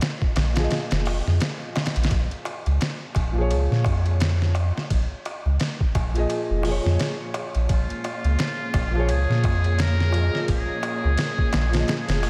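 A small room's light reverb frames this melancholic, hypnotic trip hop excerpt at 86 BPM in Bb minor, where a compressed, pitched-down sampler drum kit with a thumpy kick sits up front beside a felt-muted upright piano carrying tremolo, 12-bit grit and tape echo, while a clay-shelled darbuka sounds distant. A round dub sub bass enters at 0.4 seconds to anchor the lingering Bbm7 harmony. At 7.7 seconds a buzzy, metal-muted trumpet brings a jazz-style solo line with vibrato and scooped notes, as chorused string-machine cellos hold slow-blooming chords in the background.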